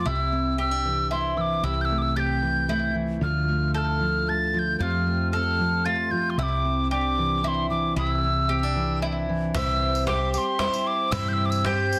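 Warm and hopeful, this indie folk passage in a straight 3/4 is cut from a longer piece whose arrangement builds as it goes. An airy tin whistle carries the melody up front, close-miked with a soft chiff, tongued notes and vibrato, its line touched by a slapback echo. Beneath it, a dark, full-bodied fingerpicked dreadnought guitar and a mellow mandolin spinning double-string arpeggios with its own slapback echo move through Cadd9, Am7/C, Dmadd9 and Fadd9, while a round, amped hollow-body bass anchors the low end. At 9.5 seconds the fingerpicked guitar gives way to a shimmering, octave-doubled twelve-string settling on C, a woody cajon with faint snares joins in the background, and a jingly, vintage-tinged tambourine follows at 9.6 seconds. Light reverb surrounds the parts, and the master is dense and heavily limited.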